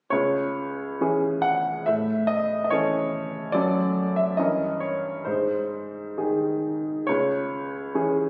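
Rubato 2/4 time at 64-73 BPM carries this passionate, bittersweet romantic character piece for solo piano in C# minor, cut from a longer work and tuned to A4 = 439 Hz, where a clear, woody and smooth upright piano sits up front across C#2 to F#5, moving through C#m, A, D/F#, Gdim7 and G# before settling back on C#m at 7.1 seconds, its vintage tone captured on a phone in the room and given a moderate scoring-stage reverb and compression.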